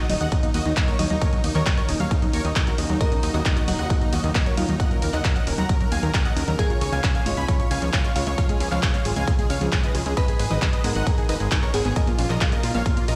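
A straight 4/4 pulse at 134 BPM drives this emotional uplifting trance passage in Eb minor, anchored by a punchy, up-front electronic kick, a layered big-room kit of handclaps, hi-hat and ride that pumps with sidechain on the hats and cymbals, and a funky, evolving analog bass whose filter pluck also pumps. A huge, thick supersaw carries the melody with vibrato, sidechain pumping and dub echo, shadowed by a very quiet lush unison pluck and a glassy, crystalline FM bell in the background treated with chorus, phaser and dub echo, while a round analog pluck spins arpeggios with chorus and echo and a shimmering, ethereal pad enters at 0.8 seconds with sustained chords. The harmony moves from Ebm7 to Db at 6.6 seconds, then through Abm to Bbm, all set in a bare stone room with light reverb as if played on a big sound system, cut from a longer piece.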